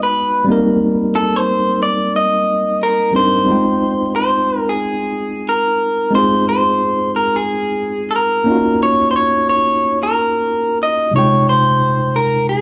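Swung sixteenths in 4/4 carry this introspective, soulful R&B fragment, cut from a longer piece, with a worn, slightly out-of-tune tine electric piano playing lightly overdriven accompaniment through its built-in speakers. Up front, a picked electric guitar through a small old amp carries the melody in a lo-fi, compressed, slightly broken-up tone, while the harmony moves from Cm7 into Fm9 at 3.5 seconds, then to Ebm9 and back. Light reverb and a layer of vinyl crackle give the sound a dusty, intimate character.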